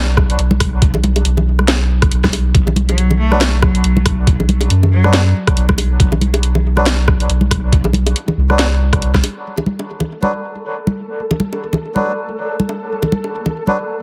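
A round, soft dub sub bass opens this cavernous, heavy deep dubstep excerpt, sitting up front with a sustained, deep tone. Almost at once a gritty, pitched-down kick with a thumpy, tape-warm weight joins a layered electronic garage kit of hi-hat, rim click and cracking snare, all moving in a swung, half-time feel. Close, dry bongos and congas played with hard hands ride alongside, their hits trailing into dub echo. At 2.9 seconds a single bowed cello, earthy and biting with a smooth top, sings a brief melody through its own echo, and a reedy, nasal melodica follows with dark, breathy stabs that carry on to the close. The sub bass, kick and kit drop away around 9.2 seconds, and from 10.0 seconds a flickering, granular, detuned texture drifts in with a slow attack and its own reverb, while the hand drums and melodica linger under a heavily compressed, radio-like sound.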